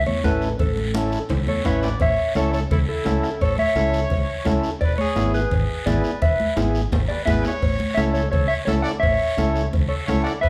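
A dark, clean electric guitar carries the melody over a punchy fingered bass, overdriven vintage combo organ, raspy guiro, high-tuned congas, soft-beaten bombo and ringing cowbell and timbales in this joyful, festive cumbia at 171 BPM in A major, with a bright trumpet entering at 1.5 seconds as a second line, drum fills around 1.3 and 6.6 seconds, and the band sounding live in one room.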